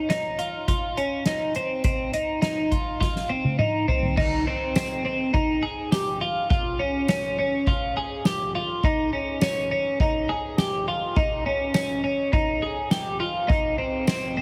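A twelve-string electric guitar opens this ethereal, melancholic dream pop excerpt, picking clean, twangy arpeggios in F minor at 103 BPM in a straight 4/4. Its bright, compressed tone sits up front, shimmering with subtle chorus and delay as it stays within a narrow range from C4 to Ab4. A soft-mallet drum kit joins at 0.1 seconds, with mallets played across the fat snare, boomy kick, toms, hi-hat, ride, crash and tambourine. The kit also sits up front and carries a big-room character, and a drum fill from 3.0 to 4.2 seconds leads into the next section. Light reverb and small-room ambience surround the pair, while heavy multiband compression gives the whole mix a squeezed, radio-like sound.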